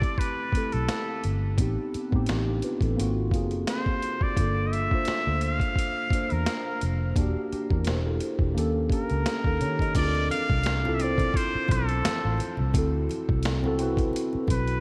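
Drenched in a moderate cathedral reverb, this dreamy neo-soul and R&B passage, cut from a longer piece, has a soulful, introspective haze, with a lazy sixteenth-note swing. A trumpet with a straight mute carries the melody in a nasal, breathy, whispered voice, with light vibrato and a soft attack that feels intimate. Beneath it, a worn, slightly out-of-tune tine electric piano sits up front, clean and direct with an analog chorus, moving through lush jazz harmony from a rootless Fmaj9 through altered and half-diminished chords to Dm7 and D7. A gritty, compressed boom bap sampler-style kit gives a thumpy kick, a high-tuned snare, hi-hat, finger snaps and crash cymbal, while a dark, round, foam-muted fingered electric bass enters at 0.5 seconds. At 9.9 seconds the second section begins, and very quiet, thick-skinned congas join the groove.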